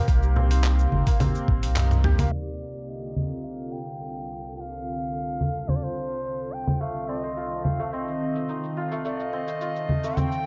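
This short excerpt of organic downtempo opens with a santur's shimmering, ringing arpeggios over a sustained, ethereal pad with ensemble chorus, built-in reverb and sidechain pumping, moving at 107 BPM in a straight 4/4 with an earthy, warm mood. Beneath them, a round sine sub bass, a thumpy electronic kick and a gritty, tape-warm sampler-style soul kit of cabasa, congas, handclaps, hi-hat and toms set a dusty groove, its hats, percussion, snare and toms darkened by low-pass filtering, while a small, close and dry frame drum adds very quiet touches. A drum fill runs from 1.5 to 2.3 seconds with a band accent at 1.8, after which the sub bass drops out and the harmony shifts from Cm7 to Dm7/C. At 2.3 seconds a bright, reedy bansuri enters up front with a tongued, straight bamboo tone, its line echoed by digital delay, as are the santur's arpeggios, while a filter sweep moves over the pad. 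The chords settle on F7/C at 6.8 seconds, and the whole piece carries a dark, warm production with little reverb in the room.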